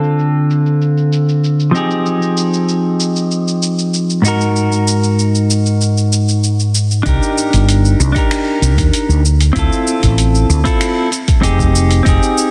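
A clean, picked electric guitar sits up front throughout this wistful sunset chillout excerpt, its compressed tone trailing a digital delay inside a lush hall reverb as the chords drift from Dm7 through Fm9 to Ab7sus2. A dusty soul sampler-style kit of finger snaps, hi-hat and shaker sounds gritty and overdriven, softened by low-pass filtering. At 7.1 s a round, growly fretless bass with a dark, hollow-body character and a deep, tape-warm electronic kick join as the harmony moves to Cm9, all within a dense, heavily limited modern master.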